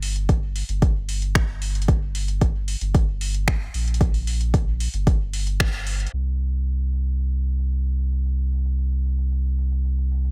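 Hazy and deep, this dub techno excerpt moves at 113 BPM in a straight 4/4, built on a clean, smooth sine sub bass that sits up front and pumps against the sidechain throughout, alongside a soft vintage rhythm box of finger snaps and metallic, overdriven hi-hats. An overdriven electronic kick, layered and re-recorded in a small room, punches up front from 0.3 to 5.7 seconds, with a band accent at 5.6 seconds. At 6.1 seconds a filter sweep carries the second section to the end, all wrapped in a digital ambience that is low-pass filtered and carries a faint mains hum.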